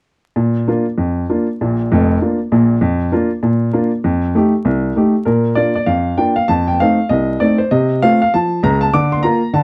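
Swung eighth notes drive this brisk 4/4 jazz passage at 196 BPM, setting a playful, swinging mood in the stride piano style. A lone upright piano carries everything from about 0.4 to 9.6 seconds, ranging from deep bass notes up into its upper register. Its tone is woody and smooth with a vintage character and short sustain, placed up front in the mix. The harmony stays rooted in Bb major, moving between Bb and F dominant chords, and a new section begins at 5.3 seconds. Light reverb and a dark, warm production come with a touch of vinyl crackle. The clip is cut from a longer piece.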